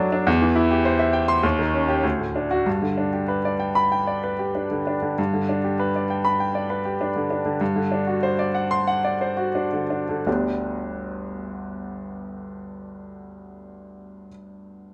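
Sparkling and heroic, this short classical excerpt is a virtuoso piano study in G major, played with rubato at 82-104 BPM in 4/4 by a clear, intimate baby grand piano that sits up front with audible action noise in light reverb, spanning G1 to D6, slowing down from 3.9 to 10.3 seconds and settling on G at 10.3 seconds.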